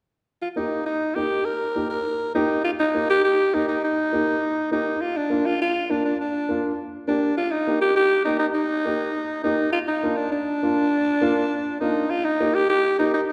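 A growling, raspy alto saxophone with light vibrato carries the melody up front over a woody upright piano in this joyful, danceable Latin excerpt in Eb major at a brisk 203 BPM, moving between Eb and Bb chords and bathed in the long, wet reverb of a concert hall.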